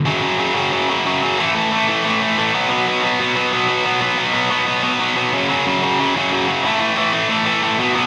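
A tight, distorted electric guitar carries this short punk excerpt entirely on its own, playing from 0.0 to 8.1 seconds. The mood is angry and urgent, driven by a fast 182 BPM pulse in a straight 4/4 feel. The guitar is bright, picked and double-tracked, sitting up front and moving through power chords on F#, A and B, returning to F# and A again before the clip ends. Its range spans F#2 to B3, giving the riff a gritty low-to-middle weight. The sound captures a live gig heard through the venue's PA, with a light club reverb around the guitar that gives it a raw, in-the-room edge.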